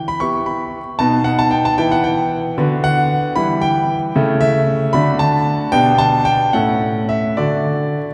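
A classical-period piano sonatina in D major, cheerful and graceful, moving in 6/8 at 76 BPM with gently flexible rubato across this short 8.1-second excerpt cut from a longer piece. A clear grand piano plays alone from A2 to C#6, intimate and up front with audible action noise, yet it sits within a wet church reverb that places the listener further back in the room. The harmony starts on E minor and passes through chords such as A/C# and G/B before settling on D at 7.4 seconds.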